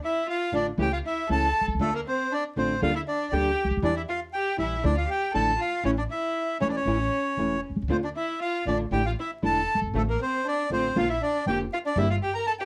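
Vinyl crackle and a moderate club reverb frame this tense, sultry tango fragment, cut from a longer piece and played with a rubato feel. A reedy bandoneon carries the melody up front, while a single bowed violin, smooth-topped and expressive with vibrato and portamento, sings a second line beneath it. From 0.5 seconds a small, thumb-plucked nylon-string guitar adds accompaniment and a woody, dark, thumpy pizzicato upright bass anchors the low end through shifting harmonies in D minor.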